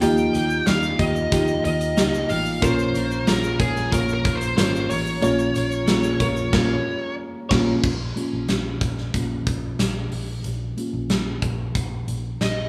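A mellow felt-muted upright piano with audible action noise leads this anthemic, hopeful piano-driven pop excerpt. Around it sit a distorted high-gain lead guitar melody, a twangy, clean twelve-string electric guitar riff, a round foam-muted vintage bass, a huge arena drum kit with a fat snare and punchy kick up front, and a grainy egg shaker in the background, before the piano takes a solo at 7.8 seconds over bass and drums.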